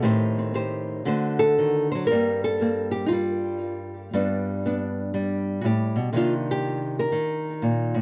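Solo jazz played on a single nylon-string guitar, relaxed and warm, moving with a gentle swing and a rubato feel over this brief 8-second excerpt from a longer piece. The fingerpicked guitar sits small and up front, spanning G2 to C5 as it moves through Am7b5, D7 and Gm11, passes briefly through G, then settles on Cm9. The sound is dry and close in the manner of a 1970s studio, with only a touch of small-room reverb.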